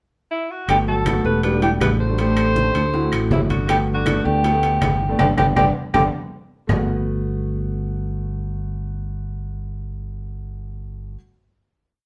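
Afro-Cuban jazz at 160 BPM in 4/4 and G major, this short, complete piece feels sunny and danceable, with the band playing live in one room under a wet studio reverb. The clear alto saxophone opens with a brief pickup at 0.3 seconds before carrying an up-front, motif-based melody with scooped notes, while a breathy tenor saxophone sits in the background with a dark, whispered harmony line mostly in thirds, full of vibrato and soft attacks. Beneath them, the grand piano adds syncopated chord stabs in rootless voicings with audible action noise, and a bright, growly fingered electric bass drives an up-front tumbao that anticipates the chords moving from Gmaj9 through Em11, Am7 and D9. The percussion features thick-skinned, low-tuned congas with slaps and open strokes, together with round, distant bongos in steady eighths with hand bell, ringing metal-shell timbales with shell pattern and bell, and woody claves marking a two-bar time line. 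A band accent and a drum fill close the section, the saxophones stop at 6.0 seconds, and piano and bass hold the final chord until about 11 seconds.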